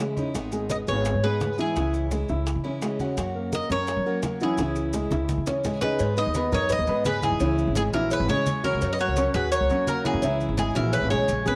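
Cuban son with a guajira lilt, this danceable, warm cut from a longer piece moves at 170 BPM in 4/4, its G#m–C#m–F# changes carried by a woody, thumpy upright bass up front and a boxy, dark grand piano rolling arpeggios with long sustain, while a picked dreadnought steel-string guitar, a full-bodied thumb-plucked nylon-string guitar touched with analog delay, and tight, saturated bongos and cowbell, low-tuned congas and grainy maracas sit in the background. The metallic, double-strung Cuban tres takes the melody up front from 0.7 seconds, and a drum fill from 4.9 to 6.0 seconds leads into the second section. A moderate spring reverb and the sound of a home cassette recording give the whole a warm character.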